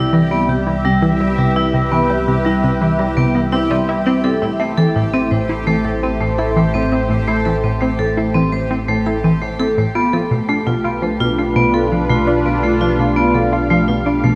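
A straight 4/4 pulse carries this mysterious, hypnotic stretch of sequencer-driven ambient space music, where a tight, driving sequenced synth riff roughened by 12-bit sampler grit, phaser and delay sits beside metallic, ringing hard-mallet vibraphone arpeggios held up front, while a sweeping resonant pad sustains full-bodied chords moving from Cmaj7 to Am to Bm7b5 over a warm analog drone, and a faint, bright bubbling stepped-filter texture glints above, all set in a wet concert hall.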